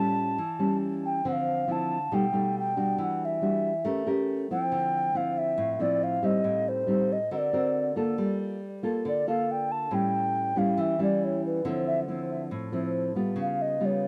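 Melancholic and intimate, this short bossa nova fragment, cut from a longer piece, moves at a straight 138 BPM pulse in 4/4. An alto ocarina carries the melody throughout, its clay tone airy and hollow with rolled-off highs, tongued notes and a gentle vibrato, all trailed by a tape echo. Beneath it, a thumb-plucked classical nylon-string guitar supplies the accompaniment, sitting up front with an acoustic warmth and moving through rich, jazz-tinged harmony such as Dm9, A7b13 and an altered D7. At 8.2 seconds the music shifts into a new section where the ocarina takes a solo over changes that pass through Gm9 and A7 before settling briefly on Dm9. The sound is dry and close, with a moderate booth ambience and the feel of a 1970s studio.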